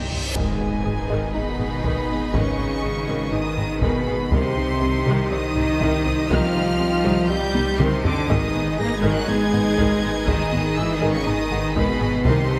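A reverse cymbal and a taiko fill open this brooding, tense excerpt of a hybrid orchestral and electronic film score at 121 BPM, with an electronic impact landing at 0.4 seconds as the chords move from G#m to Cm and back. Lush bowed violins carry the high melody over a clear second violin line, a soft-attacked viola section with portamento, mellow French horn chords, a smooth analog pad and an intense cello bass, while a bowed double bass section and a thick detuned saw bass with chorus fill the low end. Heavy-stick taiko drums sit in the background of a moderate scoring-stage reverb, a very quiet, tight sequenced synth drives arpeggios from 0.4 seconds, a second drum fill arrives at 7.5 seconds, and the electronic effects return at 12.3 seconds.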